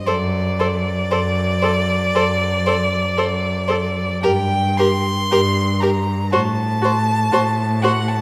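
A bowed violin melody with vibrato, rich and smooth, up front yet distant, opens at 0.0 s and is joined at 0.1 s by a warm, close second violin in the background, an expressive viola accompaniment with portamento, and an even, close cello bass up front, each played by a single player in this slow, rubato, elegiac and yearning classical string-quartet movement at 58 BPM in 4/4, its chords moving from D/F# to Gm and F#m/A within a moderate concert-hall reverb across an 8.2-second fragment of a longer piece.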